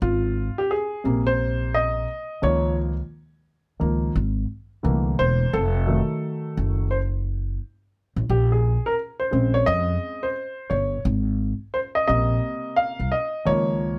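A dark, mellow grand piano and a woody, pizzicato upright bass on gut strings open together in this relaxed, smooth jazz-hop fragment, cut from a longer piece, at 87 BPM in 4/4 with a swung sixteenth-note feel in Ab major. The piano takes the solo lead for the full 14 seconds, its short sustain and audible action noise giving an intimate, vintage character as it moves through lush chords from Abmaj9 and Db6 to C13, F7b9 and Bbm9. Both instruments sit up front in a light reverb, the thumpy bass anchoring the low end beneath the piano.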